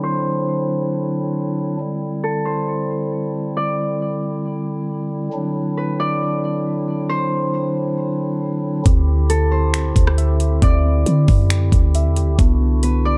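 A hollow stopped-flute pipe organ with audible chiff and tremulant holds sustained chords up front, pumping under sidechain and low-pass filtering, while a bright, ringing thumb-plucked Celtic harp carries the melody through filter and digital delay in this blissful, dreamy half-time cloud-rap fragment. At 8.9 seconds a deep, boomy sine 808-style bass, muted felt-like synth keys playing chorused, delayed arpeggios, and a smooth R&B kit with a knocking kick, metallic hats, finger snaps and rim clicks all enter, with the drums dropping out at 12.9 seconds. A filter sweep shapes the opening, and light reverb with digital ambience gives the whole a dark, dreamy haze.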